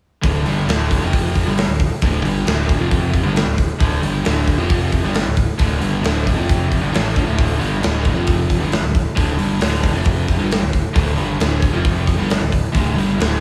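A lightly reverberant studio sound with a sense of room gives this short classic rock cut a driving, confident feel in a straight four-four. A raw garage guitar, overdriven and double-tracked, sits up front with a slapback echo, playing a riff that moves between D5 and F5 power chords from 0.2 seconds to 13.4 seconds. Beneath it, a modern picked electric bass with a bright, direct tone holds down the low end across the same span. A big rock drum kit recorded in a large room drives the groove with a punchy kick, a medium-tuned snare and hi-hat, placed up front and finishing at 13.3 seconds. The whole passage stays in one section, a steady, muscular riff that sounds lifted from a longer performance.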